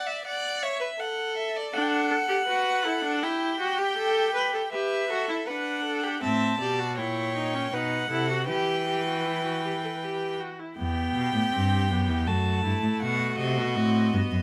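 In a straight 3/4 at 80 BPM, this stately, lively baroque-style fugue for string quartet, cut from a longer piece, opens in D major with two rich-toned violins (an up-front first violin carrying the expressive melody with vibrato and portamento over a more distant second line), while a clear, focused viola joins at 1.7 s and a smooth, even cello enters close at 6.2 s as the harmony turns to E minor, the bowed quartet set in a moderate large-studio reverb.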